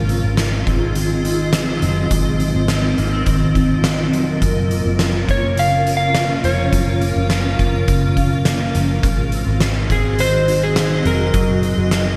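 Dreamy and ethereal, this dream pop excerpt drifts over a straight 4/4 groove, with a granular cloud pad holding blurred, evolving chords drenched in shimmer reverb while a mellow, compressed electric guitar spins chorused, delayed arpeggios and a foam-muted vintage bass sits round and punchy underneath. An oversized low-tuned drum kit sits up front with a fat snare, punchy kick and hi-hat, its gated reverb blooming in a bright stone room. At 5.3 seconds a slightly broken-up electric slide guitar, played with fingerpicks, enters with the melody over Gbmaj7, Ab7 and Gb6 chords, all set in a lush hall and a bright 1980s-style digital production.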